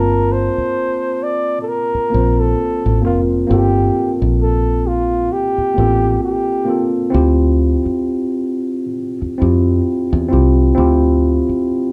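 Late-night and introspective, this slow R&B fragment with a gentle sixteenth-note swing opens on a breathy, dark flugelhorn melody, close-miked and whispered with vibrato and scooped notes, that carries the tune until 6.9 seconds. Beneath it, a worn, slightly out-of-tune tine electric piano keeps the accompaniment going to the end at 11.9 seconds, while a punchy, foam-muted fingered electric bass sits up front, moving from Gm11 to Dm11. The band plays live together in one large studio room, with a moderate reverb giving the close, intimate parts some air.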